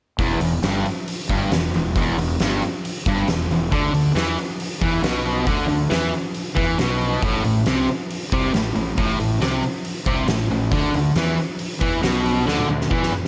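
A straight 4/4 groove at 137 BPM drives this raunchy, gritty slice of blues rock power trio and southern rock, cut from a longer piece. A double-tracked fuzz guitar sits up front with a compressed, distorted riff in its low register, cycling through Em, Bmadd11, Am and Bmadd11. Beneath it, a fingered electric bass carries the low end with a growly, overdriven fuzz tone that stays bright and direct. The oversized, low-tuned drum kit sits up front with a punchy kick and fat snare, its saturated sound pumping in a stone room alongside hi-hat and toms. Light reverb and small room ambience surround the trio, and the drums close the passage with a fill from 12.5 to 13.3 seconds.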